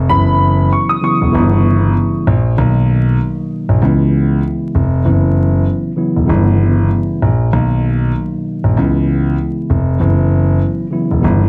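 A bed of vinyl crackle and studio ambience opens this short cut from a longer boom-bap hip-hop piece in B major, which moves at 97 BPM with a lazy 16th-note swing. Underneath, a dark concert grand piano carries the bass line in its lowest register, its deep, smooth tone and long sustain coloured by audible action noise that makes it feel intimate and vintage. A mellow tine electric piano holds the accompaniment through the whole passage, clean and direct, with a cassette-tape character and filtering that narrows its range. Briefly at the top, a clear upright piano places a high melody up front, woody and worn, slightly detuned, and it drops out at 2.5 seconds. The harmony cycles through suspended dominant, minor-sixth and major-seventh chords, giving the warm, nostalgic mood a gently unresolved pull as the second section unfolds from 2.6 seconds.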